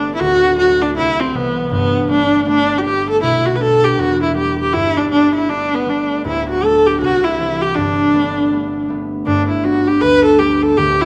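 Swung eighths drive this lively, cheerful Celtic folk fragment in 4/4 at 159 BPM in G major, where a single bowed viola, smooth and even with vibrato, carries the melody up front over the mellow, ringing fingerpicked lines of an acoustic concert harp, both playing throughout and bathed in a moderate recital hall reverb, as chords cycling through D, C, Gadd9, Bm and Em settle on G when a new section begins at 9.3 seconds.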